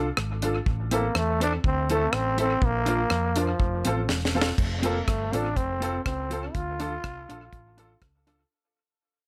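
A growling trombone carries the melody up front from 0.9 seconds, its raspy, gritty tone bright with vibrato and scooped notes in a pop-styled solo voice. Beneath it, this cheerful, bouncy ska excerpt rides a straight four-beat groove on a deep reggae kit, dry and acoustic with a high-tuned snare, tight kick, rim clicks, hi-hat and crash, its hits trailed by dub echo. A hollow-body short-scale bass, fingered and amped, sits up front with a dark, round sound. Further back, a mellow, clean electric guitar adds compressed accompaniment, while a woody, slightly detuned upright piano plays short stabs with a worn, open character and its own dub echo. The harmony moves through Dm, Am, Bb and F under light reverb, and a drum fill at 4.1 seconds leads into the second section, which fades out from 4.6 seconds.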